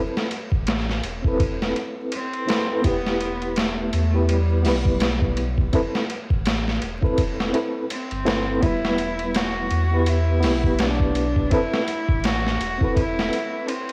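Dark and brooding, this trip hop excerpt moves at 83 BPM with a swung 16th-note feel, cycling between Amadd9 and Em chords. A reedy electric piano with fast tremolo and 12-bit sampler grit opens at 0.0 seconds, joined by an up-front, pitched-down boom bap kit with a thumpy kick and high-tuned snare, and a round sine sub bass underneath. From 2.1 seconds a distant bowed cello carries the melody with smooth vibrato and tape echo, all set in light reverb over a cassette home-recording sound with vinyl crackle.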